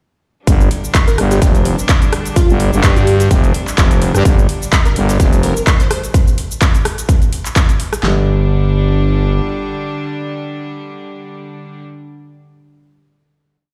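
A four-on-the-floor kick drives this bouncy, gritty bass house piece, with a lightly swung 16th-note feel, a huge snare and handclaps marking the backbeat. A second, quieter drum layer adds metallic hi-hats, rim clicks and shaker; both drum layers are overdriven, with the first pushed up front, in a large studio reverb. A growling, thick FM bass plays chopped phrases over a G5 chord, pumping against the kick, while a bright, earthy chamber string section holds sustained chords close by with the same sidechain pulse. From 1.1 seconds a plucky, detuned unison lead with a sawtooth edge and a moving notch sits far back in the mix, playing short answering phrases through chorus, cassette tape colour and delay. The drop runs until 8.0 seconds, when the beat falls away. The strings then carry a final chord until 11.8 seconds, with the bass lingering beneath them until 9.4 seconds.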